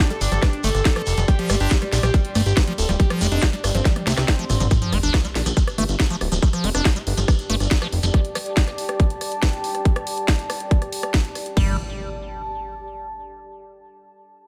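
Intense and psychedelic, this psychedelic trance excerpt runs at 140 BPM in a straight 4/4, opening on a drop where a gritty, screaming overdriven synth lead with distortion, phaser and delay carries the melody until 4.6 s over a squelchy, resonant liquid acid bass riff and a fat, detuned analog bass sitting up front. A tight electronic kick and a garage drum kit with cracking snare, hats, rim clicks, crash and toms drive the groove through a drum fill into an impact at 4.7 s, while a grainy, distant shekere rattles in the background and a deep, moody ambient pad with chorus and long release holds above, pumping with the sidechain. After the basses and shekere stop at 8.1 s, drums and pad carry on until the basses briefly return at 11.6 s, followed by a final sub drop and impact at 11.7 s, the pad trailing out to 13.2 s in a dry mix.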